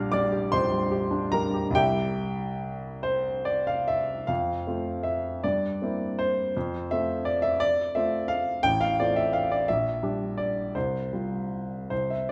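In a rubato 6/8 at roughly 46-58 BPM, counted in dotted quarters, this brief fragment of a romantic classical character piece for solo piano unfolds in F major with a hopeful, lyrical mood. The grand piano sounds clear, intimate and up front, with its action noise audible, spanning A1 to F6 in a recital hall's moderate reverb. The harmony moves from Gm7/Bb and C into a new passage at 4.3 seconds that circles around F and settles on Csus4 at 10.8 seconds.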